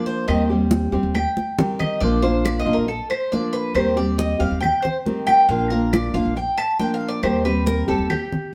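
Set in a straight 4/4 at 138 BPM, this short excerpt of Cuban son and guajira moves with a danceable, relaxed sway, the claves sitting woody and in the background as the congas, close and dry with a thick, damped skin, play through a drum fill from 1.1 to 2.0 seconds. Up front, the Cuban tres carries the lead with picked arpeggios on its doubled, partly octave-doubled strings, giving a metallic ring as it solos across the whole passage. Beside it, the fingerpicked nylon-string guitar supplies classical-style accompaniment with fresh strings and an audible finger squeak, while the upright bass plays pizzicato on gut strings, dark and thumpy. The harmony rocks between Eb6 and Bb. The band plays live together in one room, with a moderate stone-room reverb adding about a second of decay around the instruments.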